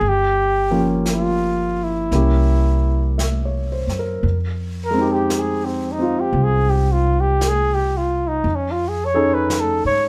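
A mellow, up-front flugelhorn carries the melody of this melancholic, smoky jazz ballad over a swung 4/4, joined from the first moment by intimate grand piano with audible action noise and short sustain, a woody, thumpy pizzicato upright bass, and a softly placed brush kit on snare and hi-hat. The harmony moves through Gm7b5 and C7b9 before settling on Fm9 at 4.2 seconds, where the flugelhorn begins its solo, then shifts to F7alt at 8.4 seconds. The band sounds as if playing live together in one studio room with moderate reverb, and the passage is cut from a longer piece.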